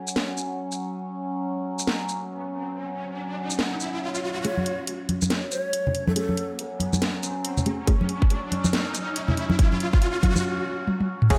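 Brooding and cavernous, this deep dubstep excerpt at 140 BPM in F# minor rides a swung half-time feel, opening on a resonant, overtone-sweeping drone and a tape-warm garage kit with cracking snare. A riser builds from 2.1 seconds, and a breathy, bright shakuhachi and filtered dub chord stabs with dub echo arrive at 4.4 seconds, joined moments later by acoustic congas. A tight electronic kick enters at 7.9 seconds, a break and drum fill follow, and a thick, saturated sub bass surfaces only at the very end.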